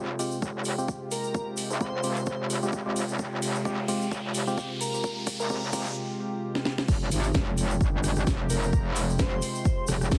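Heavily compressed with a radio-like sound, this bass house clip sits in light reverb and digital ambience, bouncy and aggressive at 130 BPM in F minor with a swung sixteenth feel. A metallic, distorted wobble bass sits up front with chorus, sidechain pumping and a high-pass filter, under a bright, evolving sawtooth pad holding detuned chords. A hollow, dark organ-like stab with chorus and tape echo plays through the build-up with a filter sweeping across it until 5.9 seconds, while an electronic riser enters at 2.8 seconds and drum fills push toward the drop at 6.9 seconds. The punchy, tape-warm electronic kick hits up front, joined by a layered house kit with a cracking snare, metallic hats, rim clicks and crashes, plus a grainy acoustic tube shaker in the background. Floating above it all, an airy, dreamy lead with vibrato, portamento and tape echo stays soft and mellow.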